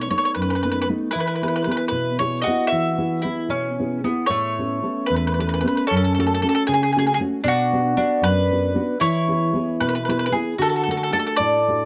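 Romantic and sunny, this Italian folk serenade in 6/8 sways with a rubato feel at 76 BPM, moving from E major to A major at 4.3 s, as a bright, picked bowl-back mandolin carries the melody up front, a mellow, round mandolin adds a lower second line, and a dark, full-bodied nylon-string guitar, thumb-plucked with audible finger squeak, supplies deep classical accompaniment, all captured in a dry, close 1970s-style small-room recording.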